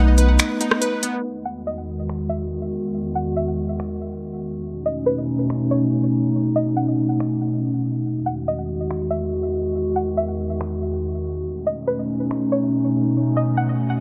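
Atmospheric cloud-rap hip hop with a blissful, floating half-time feel, where a dark, warbling tape-like pad holds sustained chords up front, a twangy string-like resonator pluck carries the melody through chorus and delay, glassy detuned digital keys arpeggiate only until 1.2 s, and a smooth, tape-warm R&B kit of finger snaps, hi-hat and rim click sits forward from 0.2 s to 12.4 s, all framed by digital ambience and a long filter sweep.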